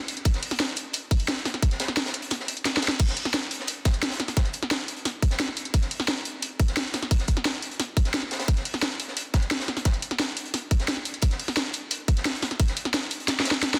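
A tight, layered electronic kick sits up front in this dark, aggressive drum and bass excerpt, dropping out briefly at 2.3 seconds and again near the close as drum fills break through. Alongside it, a produced drum kit brings a cracking snare, hi-hats and crash cymbal, while a crunchy breakbeat kit with a high-tuned, saturated snare, high-passed hats and a gritty, rolled-off sound sits in the background. Light reverb and a small room ambience frame the straight 4/4 groove in a dense, heavily limited modern master.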